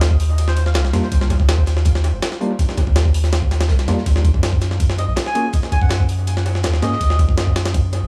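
Raw and frenetic, this short drum and bass cut from a longer jungle piece rides on a gritty, pitched-up sampler-style kit with a thumpy kick and high-tuned snare, treated with studio reverb and analog delay and layered over a very quiet, dark breakbeat kit and a deep, round dub sub bass that sits up front. A bell-like tine electric piano places clean stabs in the background with dub echo from 0.9 to 6.9 seconds, while a reedy, breathy melodica with 12-bit sampler grit offers a brief phrase at 0.5 seconds and returns at 5.0 seconds. The harmony shifts from Cm to Ebm in an echo-heavy mix with small room ambience.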